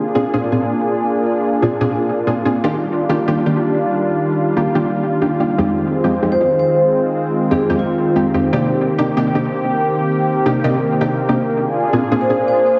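A thick, detuned pad opens the piece, holding sustained chords under a filter sweep with a chorus shimmer. Bright, punchy stabs in the manner of an orchestra hit cut in almost at once, their layered sawtooth bodies trailing built-in reverb and dub echo. This drum and bass fragment feels atmospheric yet raw, moving through a short cycle of seventh chords in a single section. At 6.3 seconds a mellow vibraphone played with soft mallets sings a brief melody, its ringing, vintage tone carrying a slow motor vibrato and its own dub echo, then falls silent at 8.2 seconds before returning at 12.2 seconds. Plate reverb gives the sound a wet sheen, while heavy compression squeezes it into a narrow, radio-like band.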